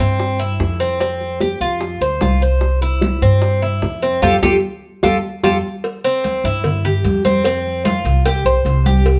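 Sunny and warm, this short cut from a longer Cuban son and guajira piece moves at 149 BPM in C major, with a bright, metallic Cuban tres up front, picking arpeggios on its double strings. A woody, growly upright bass plays pizzicato beneath it. Round, low-tuned bongos and cowbell sit close and dry, and thick-skinned congas played with hard hands stay in the background, the whole band sharing one large studio room. The band hits an accent from 4.2 to 5.8 seconds, capped by a drum fill at 5.6 seconds before the second section arrives.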